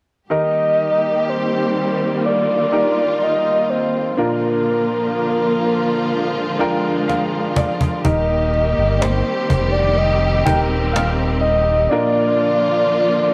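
Tender and hopeful, this slow pop ballad in Eb major moves at 62 BPM in a straight 4/4, with a round, dark synth lead carrying the melody through a soft chorus effect over clear, slightly detuned upright piano and lush, bowed strings holding sustained chords with expressive vibrato. The piano plays a fill from 6.1 seconds, the woody cajon enters at 7.1 seconds with a fill of its own, and a deep sine sub bass with an added octave joins at 8.1 seconds, sitting up front. The whole is set in a moderate echo-chamber reverb, and the passage is cut from a longer piece.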